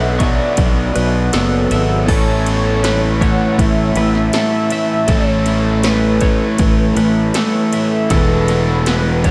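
A straight four-count pulse from 80s electronic pad drums, with punchy kick and gated snare sitting up front, carries this blissful, dreamy excerpt of shoegaze and dream pop rock, entering at 0.2 s over chords moving from Bm7 to Aadd9 and on to Esus2. A fuzzed, fingered electric bass leads the low end, while three riffing guitars fill in behind: a scooped overdriven guitar washed in reverse reverb, a bright double-tracked garage guitar with subtle chorus, and a very quiet, dark fuzz guitar. Above them, a twangy, compressed clean guitar plays arpeggios through analog chorus and diffuse delay, and a velvety, detuned synth lead sings a sustained melody with vibrato and a filter sweep, all held in a cathedral-sized reverb.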